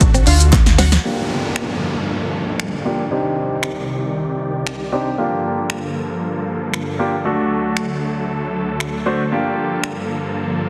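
A dense, heavily limited modern master sits in a lush hall reverb, giving this confident, driving dance-pop cut in G minor a polished sheen at 116 BPM in straight 4/4. It opens on a drop with a drum fill, where a deep sine sub bass with an octave layer, a bright, scooped clean electric guitar riff with analog chorus, a glassy, warbling wavetable pluck melody with chorus and delay, and crisp group handclaps in the background all sound only within the first second. Throughout, a punchy analog drum machine carries kick, snare, hi-hat, shaker and finger snaps up front, with soft clipping on the snare. A clear concert grand piano and huge, detuned supersaw chords hold the harmony, both pumping with sidechain compression and passing through a low-pass filter. From 1.0 s a long filter sweep shapes the section while an electronic downlifter falls away until 5.2 s, over chords moving from Gm7 to Cmadd9, back to Gm7, then to D and home to Gm7.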